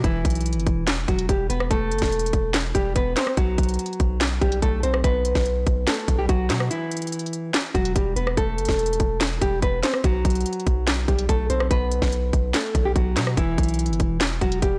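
This trap-flavoured hip hop excerpt, cut from a longer piece, sits in E minor at 144 BPM with a half-time feel, and its mood is brooding and melancholic. A dark, classical-style nylon-string guitar carries the melody up front, fingerpicked with audible finger squeak and softened by a low-pass filter. Beneath it, a long sustained 808-style bass in sine tone hits with a fast attack and decays in a deep, mellow way. The electronic trap kit is also up front, with a hard-clipped kick, sharp snare, crisp hi-hats, handclaps and rim clicks. The track drops into a brief break from 6.7 to 7.5 seconds. The harmony moves between Em and B5 before settling on Emadd9 at 13.4 seconds, all inside a digital ambience with a blown-out, overdriven recording character.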